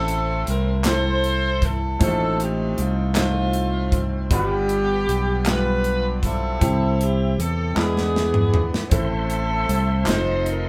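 A slow, soulful gospel passage in 6/8 at 52 BPM and F major opens with a tight, clear saxophone section carrying the melody over a brilliant baby grand piano with audible action noise and a punchy, up-front fingered electric bass, while a polished acoustic drum kit with a punchy kick and medium-tuned snare settles in with a reverent feel. Hollow group handclaps join in the background at 0.8 s, and a drum fill at 7.8 s leads to a reedy, bright tonewheel organ entering at 8.9 s with sustained chords through a fast rotary speaker, chorus vibrato and key click. The whole band sounds as if playing live together in one small, wet room.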